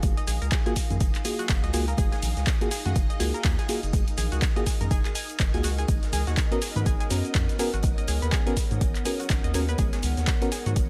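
Deep house with a late-night, deep mood, this short excerpt cut from a longer piece rides a swung 4/4 groove over two chords, F#maj9 moving to G#m11 at 5.9 seconds. An overdriven, layered electronic kick sits up front, joined by a punchy, tape-warm analog drum machine playing handclaps, hi-hat and shaker, while a very quiet arena drum kit adds hi-hat and a medium-tuned snare. Bright congas played with soft hands sit in the background, and a round, dark analog bass holds down the low end with sustained notes. A shimmering string machine of violins and a warbly, lo-fi, nostalgic tape-like pad fill in the background, both sidechain-pumping and treated with chorus. From 0.2 seconds an analog pluck with a filter sweep and sub octave plays arpeggios through tape echo, and from 0.7 seconds a mellow, vintage FM electric piano adds decaying stabs through chorus and digital delay. A digital ambience surrounds the mix.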